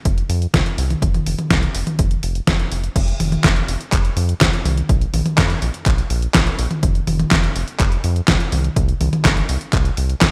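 A straight 4/4 pulse at 124 BPM drives this playful, romantic italo disco excerpt. A punchy, tape-tinged electronic kick drum sits with a detuned 8-bit drum machine placed up front, whose sampler-style, medium-tuned snare, handclaps, hi-hat, toms and crash cymbal are dressed in gated reverb. Beneath them, a round analog bass blends sawtooth and sine tones into a deep, dark, sustained line with a fast attack between F1 and F2, all within a bright 1980s-style digital production with light reverb that moves into a new section at 3.0 seconds.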